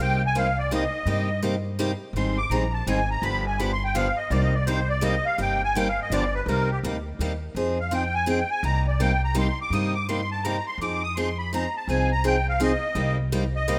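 This jazz manouche excerpt moves in a brisk 3/4 at 167 BPM, its eighth notes swung, in C minor with a virtuosic, bittersweet mood. A musette accordion carries the melody as a solo throughout its 13.8 seconds, reedy and shimmering, ranging from G4 up to Eb6. Underneath, a picked steel-string acoustic guitar supplies bright accompaniment with fresh strings, while an upright bass, plucked on gut strings, gives a woody, thumpy foundation between G1 and G2. All three sit up front in a rough home demo mix with light reverb and a small room ambience. The harmony circles Cm7, Abmaj7, G7 and Fm7 across two passes of the same section, the second beginning at 6.5 seconds, and the clip closes on Cm7 at 13.0 seconds as a cut from a longer piece.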